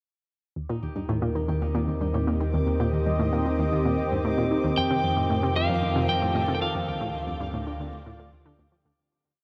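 Expansive and luminous, this short ambient space-music piece moves at 114 BPM in Eb lydian, steeped in a huge wet reverb as its chords shift from Eb6 to F7 at 4.8 seconds and Dm7 at 6.9 seconds. A round, nasal analog pluck repeats an 8-step sequence over a deep sine sub bass holding the root. A ringing, fingerpicked concert harp runs a 5-step loop that drifts against the bar, while a lush, detuned unison pad sustains slowly shifting chords and a resonant, bubbling filter texture holds a high note in the background. At 4.8 seconds a dark, slightly broken-up electric lead guitar enters up front with a free melody, bathed in shimmer reverb and delay.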